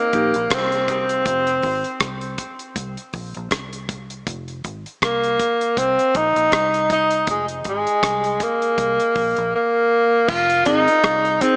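A warm tenor saxophone opens this meditative, spacious dub reggae excerpt in F minor at 80 BPM. Its solo melody carries light vibrato and tape echo, sitting up front yet sounding distant and roomy. Beneath it, a round, punchy, foam-muted electric bass and a damped 70s drum kit (dark cymbals, tight kick, hi-hat, rim click and crash) play a lightly swung 4/4 over chords moving between Cm7, Fm and Bbsus2. A mellow, clean fingered guitar with a high-pass filter and tape echo sits in the background, heard briefly at the start and again from 10.7 seconds, all within a moderate echo chamber reverb and a small speaker sound.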